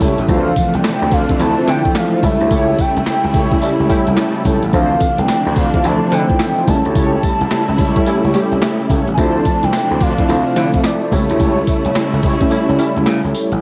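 Over a swung 16th-note groove in 4/4, a thumpy, up-front gated 80s drum machine with a gated-reverb snare, handclaps, hi-hat and tambourine drives this confident, slick new jack swing R&B excerpt, joined by a gritty, overdriven slap bass, round detuned analog keys that add a fill from 3.6 to 4.7 seconds, a lush bowed string section, dark synth brass stabs in the background and a velvety, smooth synth lead melody with portamento, all steeped in cassette-tape color and light reverb until the kick drops out at 12.5 seconds.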